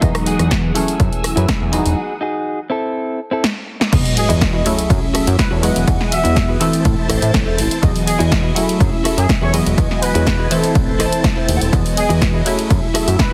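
A joyful, feel-good slice of filtered disco house, cut from a longer piece, runs at 123 BPM in a straight 4/4 in E major, its Emaj9, F#m9 and Am changes rolling under a heavily compressed, radio-style sound with light digital ambience. A fat, sawtooth-edged analog bass with tube saturation anchors the low end, while a punchy, funky polysynth comp with chorus, phaser and cassette-tape colour shares the groove with a bright, direct-recorded clean electric guitar riff. A vintage, swirling string machine holds sustained chords in the background, and together with the synth, guitar and bass it sits under a low-pass filter and pumps against a punchy, tape-toned electronic kick. A house kit of snare, rim click, hats, ride and crash drives along, with a very quiet tambourine, shaker and handclap layer heard only until 2.0 seconds. After a short break and drum fill, a band accent lands just before the drop at 3.9 seconds, marked by a faint electronic sub drop, and from 4.2 seconds a present horn section with light vibrato, 12-bit sampler grit and dub echo carries the melody, while the guitar adds a fill from 10.8 to 11.7 seconds.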